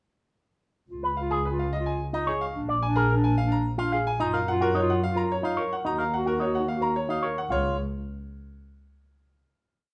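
A straight 3/4 pulse at 109 BPM drives this short, bright and propulsive piece of minimalist classical pattern music in Db mixolydian: a brilliant, open grand piano repeats a short melodic cell up front over clean, twangy picked arpeggios from an envelope-filtered electric guitar, while a mellow, distant clarinet adds a second line of pulsing notes that swell and fade, and a lush, bowed double bass section holds long, focused notes with vibrato, the ensemble sitting in a moderate large-studio reverb as the chords move from Db through Bb, Gbmaj7 and Ebm7 to a final Db chord at 7.5 seconds.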